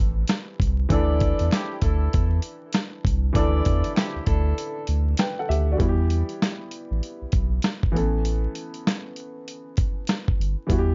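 A dark, dusty boom-bap hip-hop fragment with vinyl crackle and light reverb, gritty and tough in mood over a swung groove. Compressed sampler-style drums with a thumpy kick and medium-tuned snare sit up front beside a round, deep sine sub bass, while a filtered vintage grand piano plays short-sustained accompaniment and very quiet, close finger snaps tick until 5.4 s. Distant, roomy horn stabs with light vibrato and tape echo punch in from 0.9 s, and a break arrives at 4.6 s before the harmony moves to Em.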